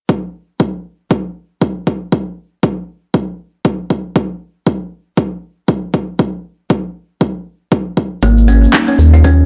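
Earthy, driving afro house at 118 BPM with a swung sixteenth feel, cut from a longer piece, where a deep, overdriven electronic kick drum, re-recorded in a small room, holds the floor alone from 0.1 seconds. At 8.2 seconds the harmony settles on Absus4 as a round, dark FM bass, up front and pumping from sidechain compression, arrives with ringing, vintage kalimba arpeggios carrying tape echo and a grainy tube shaker in a small room. A single burst of overdriven electronic handclaps lands at 8.7 seconds, all within a dry, gritty hardware sound and digital ambience.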